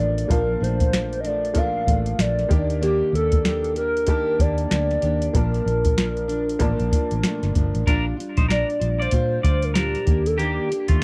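This dreamy, hazy slice of indie bedroom pop in Bb major opens with a hollow, clarinet-like synth lead carrying the melody over a fingerpicked, full-bodied steel-string acoustic guitar, a woody, slightly detuned upright piano and a round, foam-muted electric bass. At 0.2 seconds a soft vintage rhythm box joins, its deep kick, crisp snare and metallic hats overdriven and set up front. The tempo sits at 95 BPM in 4/4 with a gentle swing on the sixteenths, and the chords drift between Bbmaj7 and Ebmaj7. The lead is mellow and sustained, with a soft attack, vibrato and analog chorus, while the acoustic guitar wavers under lush chorus and a warbly pitch drift. At 7.9 seconds the piano drops out and a bright, clean picked electric guitar enters with a second line, coloured by lush chorus and tape echo, as the harmony moves to Bb6. The dry, close mix recalls a 1970s studio, and the clip is cut from a longer piece.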